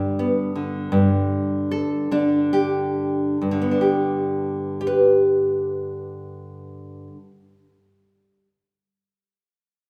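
A fingerpicked nylon-string guitar opens this gentle folk fragment alone and up front, its warm classical tone moving freely in 6/8 and easing back through the first 3.4 seconds. After settling on G harmony, the playing moves into a new passage at 3.4 seconds that returns to G and runs until the guitar stops at 8.5 seconds. A moderate reverb gives the instrument the resonant air of a church or concert hall, and the piece is cut from a longer work.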